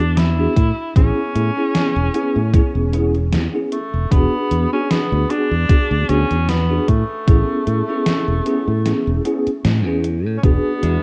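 A clear tenor saxophone, tinged with vintage 12-bit sampler grit and analog delay, opens this woozy, dreamy, lightly swung vaporwave piece at 76 BPM in A major over a growly, up-front fingered electric bass, soon joined by a gated 80s drum machine's hi-hat and gated-reverb snare, a bell-like tine electric piano with ensemble chorus drifting between E9 and Amaj9, and a thumpy electronic kick that drops out at 8.9 seconds, before a clean electric guitar with lush chorus slips in at 10.8 seconds, the whole mix carrying the rough cassette-tape haze of a home demo.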